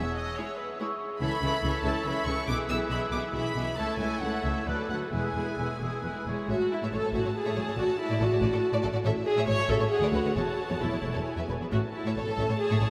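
Bathed in a huge, echoing reverb, this graceful, spirited excerpt from a quick classical-period orchestral movement in A major sways in 3/4 at 129-146 BPM with a rubato feel, as a lush, expressive violin section carries the melody over a second, background violin line, a smooth, up-front viola accompaniment and a bass of focused, distant cellos and rich double basses, while a pure flute ensemble, a soft-edged oboe and a mellow clarinet add background lines until about 6.5 seconds.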